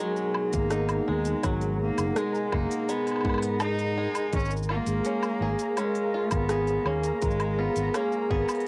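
A rich, nasal cello carries the melody through this delicate, autumnal folktronica excerpt, over a mellow vibraphone second line with tape echo, a warbling, nostalgic pad of sustained chords in the background, twangy fingerpicked banjo arpeggios with 12-bit sampler grit, and a very quiet flickering, grainy texture, while smooth hats, cabasa, rim click and woodblock join at 0.2 s and a punchy, up-front fingered electric bass with tube saturation and a tight electronic kick come in at 0.5 s, all in a moderate booth ambience with cassette-tape character.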